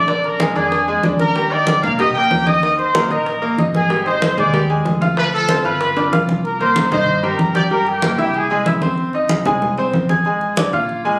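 A clear, tight trumpet section opens this fiery, passionate salsa excerpt at 189 BPM in C minor, carrying the melody up front with a light vibrato and a plate reverb. It is joined at once by a bright grand piano whose brilliant, intimate accompaniment rings with long sustain and audible action noise, and by a woody, thumpy pizzicato upright bass holding the low end. Low-tuned congas with a thin skin sound compressed and saturated, while high-pitched bongos played with soft hands sit close and dry in the background until a drum fill leads into a new section at 6.4 seconds. The harmony moves through jazzy sevenths such as Ebmaj7, Dm7 and Cm7, passing through C7 and Caug before settling on Fm7 and Bb7. The trumpets drop out at 8.7 seconds, leaving piano, bass and congas in a club-like room sound captured on a phone, tuned slightly flat to A4 = 436 Hz.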